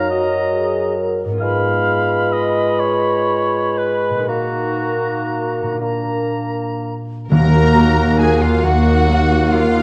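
In 6/8 with free, breathing rubato, this slow romantic orchestral movement unfolds in a solemn, melancholic mood. It opens with woodwinds weaving second lines: a pure, metallic flute high above, a mellow oboe with light vibrato, and a dark clarinet tucked into the background, while the bassoon supplies accompaniment. Distant French horns hold sustained chords, and a concert harp rings out fingerpicked arpeggios. At 7.3 seconds the strings and brass arrive: violins carry the lush, bowed melody with a second violin line above it, and a very quiet viola section adds expressive portamento. Rich cellos, double basses and tuba anchor the bass, a clear trumpet adds stabs, and round, soft-mallet timpani sound from 7.3 to 8.6 seconds. A wet scoring-stage reverb gives the production a dark, warm depth, and the passage is cut from a longer piece.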